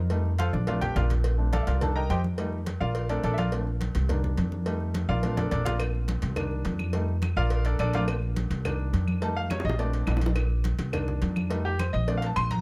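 Sunny and danceable, this short cut from a longer salsa piece moves at a brisk 210 BPM in 4/4 with a straight feel, in Bb major. A clear, worn concert grand piano takes the solo throughout, sitting up front with a present tone, deep bass and short sustain, over a repeating Cm7–F7–Bbmaj7 cycle. Also up front, an upright bass plays pizzicato with a growly, thumpy, woody sound from its steel strings, holding to the low register. Thick-skinned, medium-tuned congas with a warm tone sit in the background, while a tight, high-tuned cowbell and bongos, played with soft hands, add brightness, with drum fills breaking through at several points. Woody claves join in the background at 5.8 seconds. The sound is close and detailed, with little reverb.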